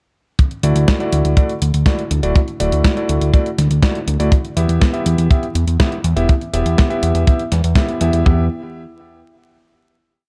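A dark, vinyl-crackled production with light reverb and a small-room ambience frames this short, complete italo disco piece in E minor, melodramatic yet danceable at 122 BPM in a straight 4/4. From 0.4 s a tight, mid-forward acoustic kick sits up front in a four-on-the-floor pulse, joined by a clean 12-bit drum machine whose closed hi-hat and medium-tuned snare carry a tape-tinged, sampler-style disco beat re-recorded in a large room. A fat, detuned analog bass mixing sawtooth and square waves gallops in sixteenth notes from D1 to E2, its fast attack, sustained mellow tone, filter sweep and moving notch keeping it thick and prominent. An electric grand piano with a warm, vintage, clangy low end plays dotted-rhythm stabs in drop-2 voicings between A3 and E5, trailed by a digital delay. The harmony moves from Dadd9 to Em, the parts stop around 8.5 s, and the piece ends at 10.2 s.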